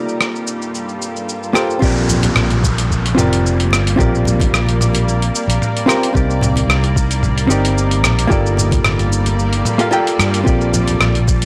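Sunset chillout with a warm, sunny swing, where a dark, clean hollow-body jazz guitar with analog delay and a shimmering, detuned ambient pad open the excerpt, joined at once by a gritty, up-front sampler-style kit of hi-hat, rim click, shaker and toms, before a growly fretless bass, a soft tape-warm electronic kick, an electronic downlifter and very quiet, bright congas arrive near 1.8 seconds over lush Gm9, Bb69 and Cm9 chords in a dry, gritty recording with light digital ambience.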